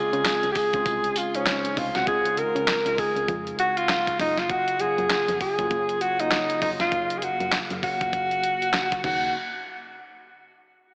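A breathy, distant alto saxophone carries a vibrato-laden jazz melody with scooped notes and slapback echo over a mellow tine electric piano shimmering with ensemble chorus, a round, dark FM bass sitting in the background and a crisp, thumpy 8-bit drum machine of handclaps, tambourine, hi-hat and crash up front, all bathed in a lush hall reverb with a big arena yet AM-radio sound in this punchy, slick new jack swing R&B excerpt, as the chords move from Dbmaj7 to Gbmaj7 before the band drops out at 9.3 seconds.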